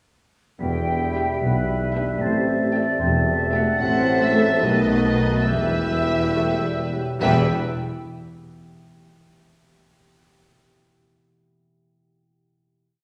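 Magical and quirky, this whimsical cinematic cue in E minor sways gently in 6/8 at about 68-76 BPM. Woodwinds, French horn section, cello and double bass sections, and tuba enter at 0.6 s, with the violins and violas joining at 1.1 s. The violin melody is smooth and rich with light vibrato over a mellow horn section, a bright, airy flute counter-melody, an oboe, clarinet and bassoon, and a softly ringing harp playing broken chords. A reverberant scoring-stage sound places the ensemble further back in the room, and the harp rings alone through the final chord until 8.9 s.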